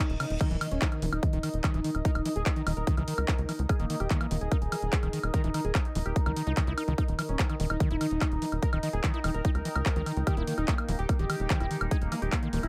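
A dry, close mix drives this intense, hypnotic psychedelic trance excerpt in Eb major at 146 BPM, with a punchy electronic kick up front beside a tight sequencer bass that plucks dark, fast-decaying sawtooth notes. A squelchy, gritty acid bass riff runs through distortion and tape echo while a thick, detuned unison lead carries the melody with vibrato, phaser and digital delay, both pumping against the kick. A techno drum kit of warm hats, handclaps, woodblock and crash fills out the beat, an overtone-sweeping drone holds chorused, phased chords in the background, and a very quiet, deep, moody ambient pad adds a shadowy sub-octave texture throughout the 12.7 seconds.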